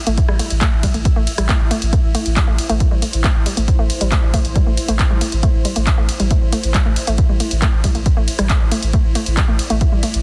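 A blurred granular cloud pad in its own reverb opens this hypnotic, relentless stretch of driving peak-time techno, joined almost at once by a woody, wave-folded pluck riff with chorus and tape echo, a thick, overdriven sub bass filtered low in the background, and a punchy analog drum machine of handclaps, hi-hat, ride cymbal and rim click, with an electronic kick arriving at 0.2 seconds; both drum parts are re-recorded in a large room, the pad, pluck, bass, hats and cymbals pump to the sidechain, and the track sits in a digital ambience under a dense, heavily limited master.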